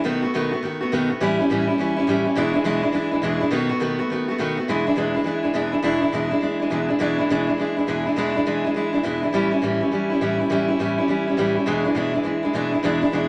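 A picked steel-string acoustic guitar plays alone and up front for the full 13.3 seconds of this excerpt, its tone warm and auditorium-like as it ranges from E2 to F#4. The style is upbeat, retro rock in E mixolydian at a brisk 206 BPM in 4/4, with a swung eighth-note feel. The opening passage moves through B7, A7 and E7 before settling back on B7, and a second passage begins at 4.7 seconds on E7, shifting to A7 and returning to E7. The guitar sits in a moderate, large studio reverb that lends it a roomy, open sound. Cut from a longer piece, the excerpt carries a lively, dominant-seventh bounce.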